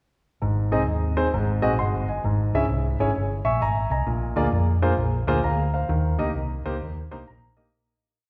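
A swung eighth-note groove at 131 BPM in 4/4 drives this short, uptempo gospel piece in Ab major, uplifting and soulful in mood. Baby grand piano and a hollow-body short-scale fingered electric bass play together from 0.4 s to 7.7 s as a breakdown. The piano sits up front with a natural, short-sustained tone, comping off-beat chords in drop2 voicings and adding short fills around 3.2 s and again at 7.0 s. Beneath it, the bass sounds dark, round and punchy, walking and running through the changes with slides and chromatic approach notes. The harmony moves from Ab through Ab7 and Dbm/Ab to Bb7 before settling on Eb. A reverberant recital-hall ambience surrounds the performance, which fades out from 5.9 s to the close.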